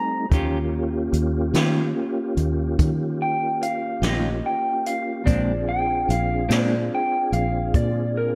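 A clean, picked electric guitar carries the solo, its tone shimmering with harmonic tremolo and slapback echo from 0.3 s until it drops out at 6.8 s. This is a swaggering, soulful slow blues in 12/8 at 48 BPM, cut from a longer piece. Above it, a second electric guitar played through a small old amp adds a slightly broken-up, lo-fi line up front, also touched with slapback echo. A mellow, flute-like tonewheel organ holds sustained chords through a slow rotary speaker and chorus vibrato. A round, foam-muted fingered bass sits direct and up front, while a jazz brush kit with a boomy kick, medium-tuned snare and hi-hat sounds distant and roomy, with a rolled-off top. The harmony moves from Eb9 to Bb9 at 5.3 s, and a lush hall reverb gives the whole band a big arena sound.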